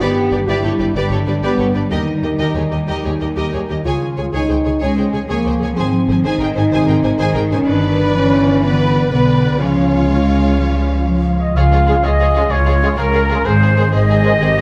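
Triumphant and adventurous, this cinematic orchestral passage, cut from a longer piece, moves in a straight 12/8 over a moderate scoring-stage reverb. Lush bowed violins carry the melody with vibrato and a focused, smooth top, while a second violin line and expressive violas, touched with portamento, fill out the string texture. Mellow French horns hold sustained chords, a very quiet concert harp rings out thumb-plucked arpeggios, and the bass is anchored by clear, even double basses up front and cellos sitting in the background. At 11.4 s an airy silver flute joins with a second line and a distant, roomy trumpet adds stabs, followed at 11.9 s by a very quiet, bright trombone section holding chords. The harmony shifts among G, Eb, Db and Ab, giving the passage a sweeping, heroic sense of motion.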